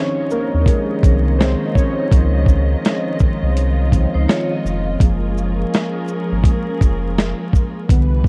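Dark, dry and dusted with vinyl crackle, this cosy, nostalgic lo-fi hip hop excerpt opens with detuned, warbling synth keys carrying the lead through chorus, cassette-tape wobble and a low-pass filter, over lush, bowed strings with smooth vibrato. A gritty, compressed sampler-style kit with a thumpy kick, snare, hi-hat and shaker arrives at 0.3 seconds on a swung sixteenth feel, and a round, deep sine sub bass sits up front from 0.5 seconds. At 4.1 seconds a metallic, ringing vibraphone drifts in the background through analog delay, as the harmony moves from Dbmaj9 to Gbmaj9.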